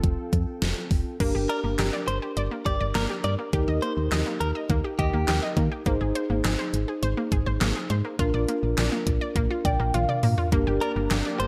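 A solid FM bass sits up front in this bright, upbeat synth-pop excerpt, its punchy, round tone striking with a fast attack and then decaying into a dark digital low end. At 103 BPM in a straight 4/4, a layered, produced pop drum kit drives the groove with a knocking kick, a deep snare, handclaps, hi-hat, toms and crash, its overdriven sound re-recorded in a small room and given gated reverb. A mellow tine electric piano plays accompaniment throughout with a clean tone through its built-in speakers. A brassy analog pad with chorus holds bold, detuned sustained chords at the opening and again near the close, while an analog pluck enters at 1.2 s with round, detuned arpeggios treated with chorus and tape echo. A direct-recorded clean electric guitar adds a compressed, picked second line from 1.5 s, also with tape echo. The electric piano fills from 9.4 s and the drums join with a fill at 9.9 s as the harmony moves from Gm through Eb, Abadd9 and Bb before settling back on Gm, all in a light reverb.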